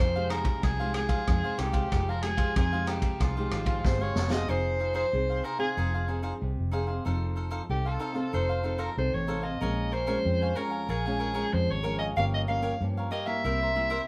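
Yearning yet lively, this short samba-and-choro excerpt features a bright, forceful soprano saxophone carrying the melody with vibrato and scooped notes over crisp picked cavaquinho, fingerpicked nylon-string guitar and a round, foam-muted vintage electric bass, while a punchy vintage drum kit with dark cymbals and a high-tuned snare plays only until 4.5 seconds, ending with a fill as the harmony moves from Fm9 toward a closing C7 in a moderate studio room.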